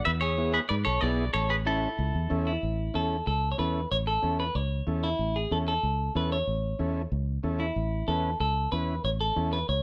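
Light reverb surrounds the band in this sunny, danceable Latin excerpt, cut from a longer piece and played with a straight feel. A bright, twangy clean electric guitar, picked and compressed with a touch of spring reverb, carries the melody from the opening over an E7 that moves to A. Beside it, a semi-hollow electric guitar plays a clean, picked second line with a hollow-body tone. A round, foam-muted fingered bass sits dark and direct underneath, while an overdriven combo organ adds reedy, vintage accompaniment with light vibrato. From 2.6 s the music moves into a new section, featuring a clean electric guitar solo that runs to 9.8 s.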